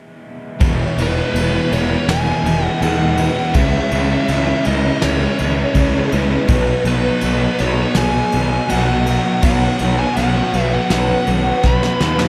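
A growly, up-front fuzz bass anchors this hazy, wistful slice of shoegaze-leaning dream pop rock, cut from a longer piece and moving at 82 BPM in a straight 4/4 in B major. Beside it, a thick, dark fuzz guitar carries a distorted riff through analog chorus, while an overdriven electric guitar sits in the background playing its own riff, bathed in reverse reverb. A shimmering, octave-doubled twelve-string acoustic guitar picks arpeggios further back, spread by ensemble chorus and diffuse ambient delay. From 1.0 seconds a nasal lead guitar with a parked wah sings the melody, overdriven and trailed by its own ambient delay. A soft brush kit with a fat snare, punchy kick and ride cymbal keeps time, closing with a fill from 11.6 seconds as the chords move from E6 through C#m7 and B to Bsus2. The whole mix is soaked in a lush hall reverb, giving it a dreamy, enveloping haze.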